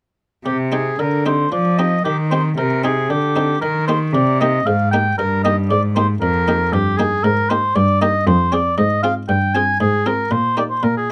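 Classical baroque-style sonata movement with continuo in 3/4 at 116 BPM, grave and introspective, played with rubato and moving from C minor toward Eb major from 6.7 s in this short cut from a longer piece. A warm oboe with light vibrato carries the melody up front over a rich, gut-string bowed cello on the bass and a muted, lute-like buff-stop harpsichord plucking the accompaniment. All three play together from 0.5 s to 11.1 s, captured by close, detailed microphones in a dry room.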